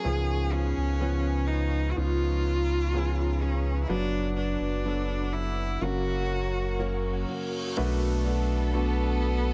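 A smooth, bowed cello carries the heartbroken, longing melody of this slow 62 BPM pop ballad in B minor, set over an intimate concert grand piano with audible action noise and analog delay, a shimmering retro pulse-width pad, a very quiet woody fingerpicked steel-string acoustic guitar, and a deep, up-front sub bass, while an electronic reverse cymbal and downlifter come in at 7.0 seconds and a lush, distant violin section enters at 7.8 seconds on a Bm7 chord in a small-room, echo-heavy mix.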